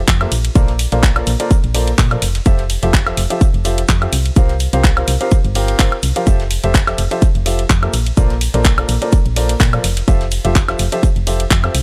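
A round, dark FM bass with sidechain pumping opens this uplifting, feel-good piano house excerpt in F major at 126 BPM with a light 16th-note swing, joined at once by a punchy, up-front electronic kick, a layered house kit of handclaps, hi-hat, ride cymbal and woodblock, and a very quiet brushed acoustic kit with hi-hat, shaker and snare, while a polished grand piano riff, pumping along with the bass, moves through Bbmaj9, Fmaj9 and C7sus4 in a dry, gritty small-room sound.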